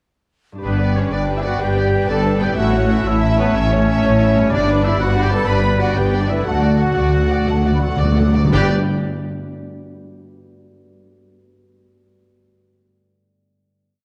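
A dark, warm orchestral sound sits in a moderate scoring-stage reverb, giving this short, complete cue of heroic adventure film music a triumphant glow in G lydian, moving in a straight 12/8 at roughly 113-125 BPM in dotted quarters. From 0.6 seconds the orchestra plays the theme: a lush violin section carries the melody with a rocking two-note figure and sustained chords, while a second, richer violin section in the background doubles the tune at the octave, the clear oboe doubles it at the octave and in thirds, and a distant trumpet section doubles it in unison alongside its stabs. A large, airy flute ensemble holds sustained chords and answers at phrase ends, a very quiet clarinet adds sustained chords, and the soft-attack French horn section carries melodic lines and sustained chords. Violas rock in a two-note figure in the background beneath them, and the cellos play the bass on the beats with sustained notes, doubled by a close, up-front double bass section, while a very quiet, bright concert harp rings out rolled-chord arpeggios from 0.5 seconds. 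Timpani with hard mallets enter at 4.5 seconds, close and dry, as the music slows toward a timpani fill that leads into a final G chord at 8.5 seconds.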